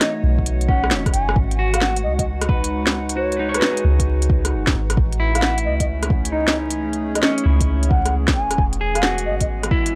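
Wistful and ghostly, this future garage excerpt moves at 133 BPM in G# phrygian with a swung sixteenth-note feel, cut from a longer piece. A hollow wooden flute carries the melody with an airy, vibrato-touched tone and soft attack, trailed by tape echo, while a dark, clean electric guitar accompanies through sampler grit, tape echo and sidechain pumping. Beneath them a warbling, detuned, nostalgic lo-fi pad holds sustained chords with chorus and reverb, pumping in time, moving from F#m7 through G#m7 and Amaj7 before settling on E near 8.6 seconds. An up-front electronic kit with a woody snare, crisp hats and rim clicks drives the groove, joined by a soft kick from 0.4 seconds and a deep, round 808-style bass that enters at 0.2 seconds. A short drum fill runs from 0.9 to 1.4 seconds, with a band accent landing inside it at 1.3 seconds, and the whole mix sits in a dry, gritty digital ambience with transformer saturation and vinyl crackle.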